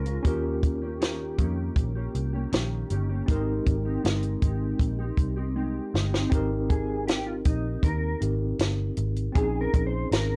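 A straight 4/4 pulse at 79 BPM comes from a compact cocktail drum kit with a punchy kick, high-tuned snare and hi-hat, sitting dry and up front in this hazy, dreamy stretch of indie bedroom pop in Ab major, cut from a longer piece. Beneath it, a vintage muted picked electric bass with a round, foam-muted, tube-saturated tone holds the low end, also placed up front. A dark, compressed electric guitar, fingered and clean, adds accompaniment through analog chorus and vibrato, while a worn, slightly out-of-tune tine electric piano plays through built-in speakers with a cassette tape coloring. The harmony moves from Eb7 to Abmaj9 and later reaches Bbm11. A drum fill at 5.6 seconds leads into a clean electric guitar solo from 6.3 seconds to the end, all captured in a gritty hardware recording with little reverb.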